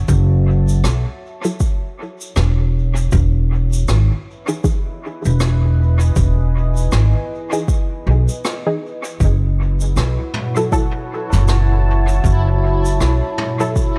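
Ambient dub at 79 BPM in F# dorian, hazy and meditative, with a loose swing on the sixteenths and an echo-heavy small-room sound. A woody pizzicato upright bass sits up front, joined from 0.1 seconds by an overdriven electronic kick and a distant, roomy brush kit whose rim clicks, shaker and toms trail off into dub echo. Beneath them a deep, detuned sawtooth pad fades in, holding sustained chords with chorus and reverb as the harmony moves from F#m7 to Emaj7 and back. From 1.4 seconds a muted, filter-plucked chord stab with chorus cuts in, its filter sweeping and its hits scattering into dub echo. At 10.0 seconds a reversed, granular texture swells up in the background, dreamy and bright, before the excerpt is cut from the longer piece.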